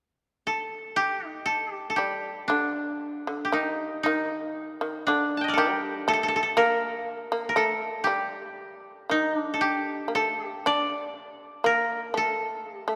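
The koto opens this excerpt at 0.5 s, alone and up front, playing the melody between D4 and A5 with a mellow, woody tone from fingerpicks. At 2.0 s the shamisen joins as a second line in the lower register, from D3 to D4, its plectrum-plucked notes percussive and buzzing on a fretless neck. This is austere, still Japanese chamber music in the traditional style, moving in a rubato 2/4 at about 59 BPM. The music sits in G hirajoshi, with tuning set to A4 = 441 Hz. A long church reverb of 3.1 seconds surrounds the two plucked strings, giving the sparse lines a spacious, lingering resonance through to the end at 13.0 s.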